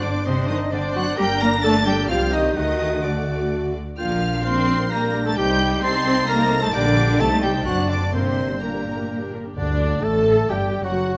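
A moderate recital-hall reverb gives this brief cut from a quick classical-period symphonic movement in G minor a sense of space, and its restless, urgent mood drives forward at 129 BPM in a straight 3/4. Rich, focused violins carry the melody high above the orchestra, while a second, more distant violin line sits in the background alongside a bright, present oboe, a clear close-miked clarinet and a hollow, airy flute, each tracing its own second line. Dark violas with expressive portamento fill in the accompaniment beneath sustained chords from a tight French horn section, and smooth, close cellos join soft-attack double basses to anchor the bass. Very quiet timpani with hard mallets tap a dry G at the opening and return at 8.1 seconds. The harmony moves restlessly through G minor, C minor, D and B-flat with diminished and dominant-seventh colour before settling on an open G. At 9.6 seconds a mellow bassoon slips into the accompaniment.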